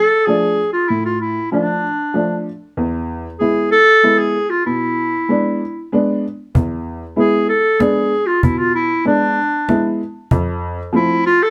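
Soulful and bittersweet, this short excerpt of klezmer moves at 96 BPM in a straight 3/4, with a distant, roomy clarinet singing the classical-style solo melody up front over a dark upright piano that sounds mellow, worn and slightly detuned, its woody action noise and short, boxy sustain audible in an intimate small room. The harmony moves from D minor to E and then to F at 10.3 seconds. A close, acoustic cajon with faint snares enters at 6.6 seconds as the opening phrase repeats.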